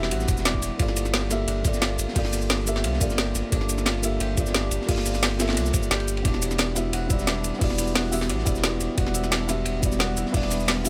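Liquid drum and bass at 176 BPM in a lush, dreamy mood, this short excerpt opens on Em9 before settling into a long stretch of Gm9 and returning to Em9 near 6.2 seconds. A soft, felt-muted upright piano with audible action noise carries the harmony through a delay, while a thumb-plucked concert harp rings out arpeggios in the background through digital delay, and a deep, sine-like sub bass sits up front with tube saturation. The drums layer an overdriven garage kit with a woody snare and metallic hats, a dark, rolled-off breakbeat kit in a small room with a high-tuned snare, and a gritty, thumpy, pitched-up electronic kick that enters at 0.3 seconds.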